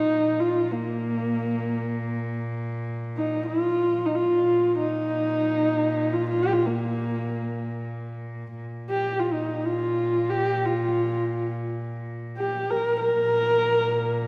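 Set in a recital hall with a generous, wet reverb, this short cut from a longer piece of Mongolian traditional folk music moves in free time with a galloping, proud spirit. A single bowed horsehead fiddle carries the melody up front, its husky, woody voice shaded dark and softened at the top, colored by vibrato and portamento and trailed by a tape echo as it ranges from Bb3 to Bb4. Beneath it, one bowed cello holds a Bb2 drone throughout, sitting close with a period-style gut-string character that is both rich and reedy. The two instruments sound together from the opening to the close at 14.3 seconds. The same melodic passage is stated twice, with the repeat beginning at 8.6 seconds.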